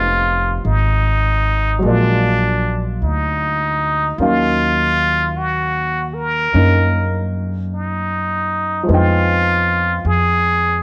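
Swinging lazily at 51 BPM in 4/4, this melancholic, smoky jazz ballad fragment in Eb minor puts a brilliant, up-front plunger-muted trumpet with a wah-wah bite on the melody over a woody upright piano and a growly pizzicato upright bass, set in a moderate echo-chamber reverb with small-room ambience as the chords move from Fm7b5 through Bb7b13 to Ebm9.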